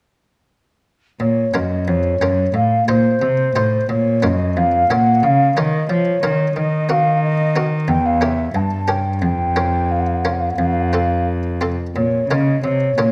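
A straight 4/4 pulse at 89 BPM carries this flowing, grave baroque-style sonata movement in Bb minor, tuned to A4 = 438 Hz and cut from a longer piece, with flute, harpsichord and cello entering together at 1.2 seconds. A hollow, woody baroque flute with vibrato and a crisp attack sings the melody from a distance, while a dark, up-front solo cello with reedy gut-string tone bows the bass line. A muted, lute-like buff-stop harpsichord plucks a dry continuo through a harmonic path that passes through F7/A and Edim7 before resolving to Bb minor, all set in a moderate recital hall reverb.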